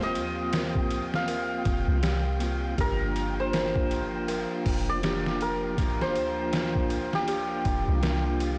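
Up front sits a gritty, pitched-down sampler-style drum kit, its thumpy kick, medium-tuned snare, hi-hat and ride cymbal compressed and overdriven with 12-bit sampler grit, setting a slow 80 BPM trip hop groove in 4/4 with a 60% swing on the 16ths. A hammered santur carries the melody in G minor, its ringing, shimmering acoustic tone trailed by tape echo, while a flute-like tonewheel organ turns through a slow rotary speaker with tremolo and echo beneath it. A soft, round 808-style bass supplies deep sine lows, and in the background a bowed symphonic string section holds smooth sustained chords with light vibrato. An eerie, inharmonic FM bell, detuned with chorus, delay and sampler grit, spins arpeggios, and a flickering, granular texture hovers high in its own reverb. The harmony moves from a rootless Ab6 to Gm7 at 2.8 s, and the whole melancholic, cinematic passage, cut from a longer piece, comes through a blown-out, overdriven recording with vinyl crackle and light reverb.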